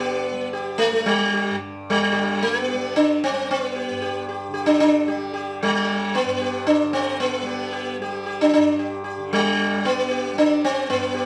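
Moving in a straight seven-beat cycle that gradually speeds up, this devotional, radiant Hindustani classical excerpt sets a plectrum-plucked sitar melody, bright and buzzing with shimmering sympathetic strings, up front over a softly plucked tanpura drone that sits lower in the mix, both played live together in a stone room with a moderate reverb.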